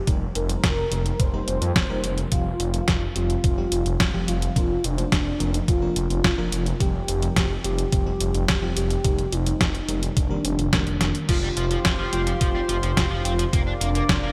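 The detuned saw bass sits up front with a thick, chorused, tube-saturated tone and sidechain pumping, under a velvety synth lead carrying the melody through chorus and digital delay in this moody, cinematic synthwave excerpt at 107 BPM in 4/4. A dark, dreamy FM electric piano with a soft pad layer plays tremolo-laced stabs in the background until 11.3 seconds. A thumpy electronic kick and a detuned 8-bit drum machine with gated-reverb snare, hi-hat and crash round out the bright 1980s-style sound over chords moving between Eb/F, Fsus2 and Bb/F. After a drum fill at 11.0 seconds, a shimmering pulse-width pad and a biting overdriven guitar riff enter at 11.3 seconds.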